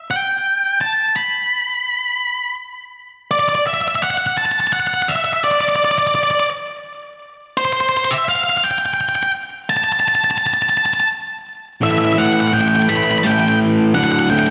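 In a straight 6/8 pulse at 56 BPM counted in dotted quarters, this hopeful, euphoric rock passage, cut from a longer piece, opens with an up-front octave-fuzz lead guitar carrying the melody, its picked, fuzzy tone trailed by slapback and tape echo. At 11.8 s a bright, double-tracked distorted electric guitar enters with a low riff over A5, moving to D5 at 14.0 s, as the music builds until 14.5 s. A lush hall reverb with digital ambience gives the whole passage a big arena sound.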